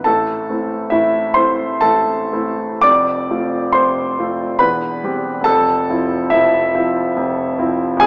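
In a flexible, rubato triple metre, this brief 8.1-second passage from a romantic character piece for solo concert grand piano moves from Am through F and C/E to Fmaj7 with a hopeful, passionate air, the piano sitting up front with a deep, natural bass across a range from E1 to D6, set in a moderate recital-hall reverb and heard through a small-speaker sound.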